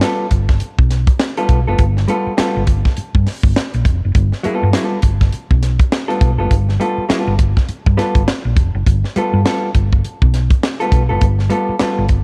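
A clean, compressed vintage hollow-body jazz guitar sounding a G9 chord and a crisp fusion drum kit with a high-tuned snare and punchy kick open this strutting, gritty funk excerpt at 102 BPM, swung on the 16ths in G mixolydian, joined at 0.3 seconds by a round, amped hollow-body short-scale fingered electric bass, with all three parts up front in a dry, dark mix.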